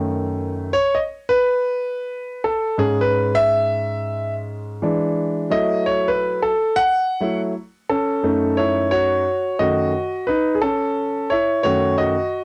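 A warm concert grand piano plays alone throughout this 12.4-second fragment of a longer hip hop piece: natural and up front, with a deep bass and the character of cassette tape. At 88 BPM in 4/4 with a swung sixteenth-note feel, it moves through smoky, nocturnal F# dorian harmony, from F#m6 through E6/G#, E7 and F#m7. At 8.2 seconds it turns back to F#m6 to open a new section, all within the moderate ambience of a home recording booth.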